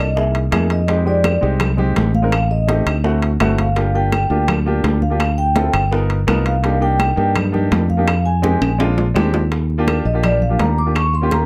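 A brisk 167 BPM groove in straight 4/4 drives this fiery, sophisticated Afro-Cuban jazz passage in C minor, cut from a longer piece, with ringing metal-shell timbales heard close and dry while warm, close-miked congas, soft-handed, tightly tuned bongos and distant, woody claves sit further back. A growly, bright fingered electric bass sits up front between G1 and G2, anchoring the harmony as it moves from C7alt through Fm9, Am7b5 and Gm7 toward Cm9. The vibraphone, played with soft mallets and a medium motor vibrato, carries a mellow, full solo between D5 and D6 across the whole 11.5 seconds. Beneath it a baby grand piano with short sustain and a natural tone supplies accompaniment in a middle register. A drum fill from 8.4 to 9.5 seconds leads into a restated section that opens on Ebmaj7, and the close, detailed sound carries little reverb.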